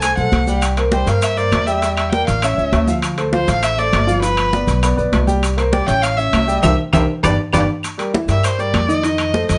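Afro-Cuban jazz at a lively, sunny 200 BPM in C mixolydian, where a rich, expressive erhu carries the melody with vibrato and portamento over a natural grand piano, a dark, thumpy pizzicato upright bass, ringing high-tuned congas, saturated metal-shell timbales, and woody claves and grainy maracas in the background, with a band accent from 6.6 to 7.8 seconds and a drum fill from 6.9 to 7.8 seconds before the erhu takes a solo at 7.8 seconds over moderate studio reverb.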